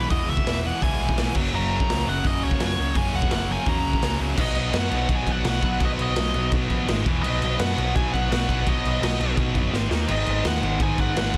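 A driving, straight 4/4 punk rock pulse in a quick tempo opens this rebellious, upbeat fragment cut from a longer piece, with a raw garage drum kit entering at 0.1 s on punchy kick, medium-tuned snare, hi-hat and dark crash cymbals, its small, pumping room sound saturated and gritty with a rolled-off top and placed up front. An overdriven picked electric bass growls underneath, bright and amped, while two riffing guitars sit in the background: one sludgy and dark with overdrive, the other tight and bright with distortion. Above them a nasal lead guitar with a parked wah carries the melody, its dark overdriven tone trailed by delay. A very quiet, double-tracked distorted electric guitar joins the riffing at 1.5 s, adding a faint bright layer. The chords move from E to F# before the music shifts to B at 4.4 s and continues through G#5, E5 and D#5 power chords, and a drum fill at 9.7 s leads into G#m, all in a dry space with a dense, heavily limited modern master.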